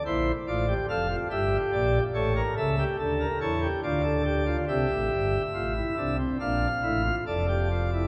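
A pipe organ with sparkling flute stops, light and bright in a romantic voicing, sits up front as the sole voice in this short baroque-style three-part fugue, cut from a longer piece and moving at 71 BPM in 3/4 with a driving yet solemn character. It opens in D minor, passing through Dm, Edim/G and A, then shifts to F major at 4.7 seconds, touching Bbmaj7#11 before settling back on F. The organ spans from F1 to F5 and is bathed in a cavernous cathedral reverb with a long 4.5-second decay.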